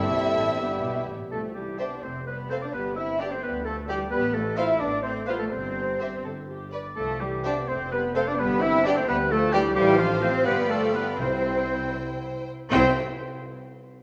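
A rich, focused violin section carries the melody with vibrato in this graceful, lively classical-period movement for symphony orchestra, a passage cut from a longer piece in 6/8 at about 79-89 BPM in dotted quarters, played with rubato in C major and tuned to A4 = 437 Hz. Beneath it, a second, intense violin section, an airy flute section, a clear solo oboe with light vibrato and a mellow, distant clarinet weave supporting lines, while a smooth, even viola section fills in the accompaniment from the background. A dark French horn section holds soft-attacked sustained chords, and the cellos and the double basses, the latter with a smooth top, anchor the bass with bowed vibrato. A soft-toned solo bassoon adds accompaniment only until 1.1 seconds, and timpani struck with hard mallets sound close and dry at the opening, returning at 11.2 seconds. The harmony moves through plain cadential progressions of C, F and G, reaching G7 before settling on C, all set in the wet reverb of a scoring stage.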